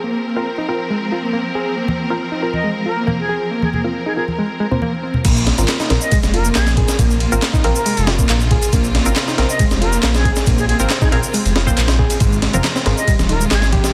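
Breakbeat at 138 BPM with a gritty, raw mood, this excerpt opens on a reedy electric piano riff with fast tremolo and overdrive over distant, lush bowed strings pumping under sidechain and muted dub chord stabs with chorus and echo. Close, low-tuned congas join shortly after, followed by an airy flute melody with AM radio tone and dub echo. The drop around 5.3 seconds brings in a thumpy, pitched-up sampler-style breakbeat kit, overdriven electronic shaker and handclaps, and a swirling, dark detuned saw bass with phaser and tube saturation, all under vinyl crackle and a dense, heavily limited master.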